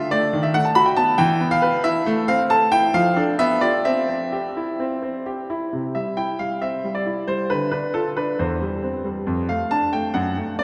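In a rubato 4/4 at 136 BPM, this elegant, cheerful classical-period piano sonatina in C major is a short cut from a longer piece, with a solo concert grand piano spanning E2 to B5. The piano sounds clear and up front, with deep bass and an open tone, set in a long cathedral reverb of 5.0 s from a church or concert hall. The opening passage settles on C at 3.9 s and returns at 5.7 s, this time moving through Dm6 and C/E before ending on F#m.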